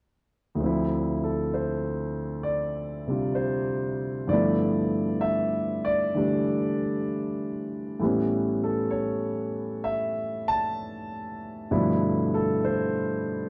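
Jazz fragment at a slow 65 BPM with a swung eighth-note feel, late-night and romantic in mood, where a solo concert grand piano plays from 0.5 to 13.5 s, moving through Dm9, G13, A9 and back to G13 with a deep bass, an open, up-front tone and moderate studio reverb in a dark, warm production.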